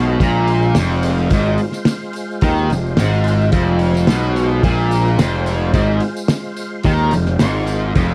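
Psychedelic rock in F minor at 108 BPM, this short, hypnotic and mysterious cut sits on a single F minor chord in a straight 4/4 feel. An overdriven semi-hollow guitar, bright and double-tracked with a flanger, plays an up-front riff in the low register, while a fuzz-drenched picked electric bass sits equally forward underneath it. In the background, an overdriven tonewheel organ holds thick, gritty sustained chords through a slow rotary speaker and chorus vibrato, its key click audible. A cloth-damped drum kit enters at 0.2 seconds with a fat, muffled snare, tight kick and hi-hat, sounding saturated with a rolled-off top. A distant, jingly tambourine rides far back, and the whole recording has a dry, close 1970s studio sound with little reverb.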